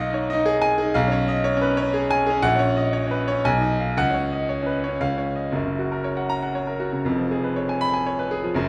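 A smooth, vintage-toned grand piano sits up front as the sole voice of this heroic, sparkling classical study, a virtuoso passage in three-quarter time played with a free rubato feel. Its clear sound ranges from deep bass to a brilliant upper register, carried by moderate recital hall reverb, and the harmony moves through a shifting chain of inverted chords before a new section opens at 5.5 seconds. This short passage is cut from a longer piece and ends at 8.7 seconds.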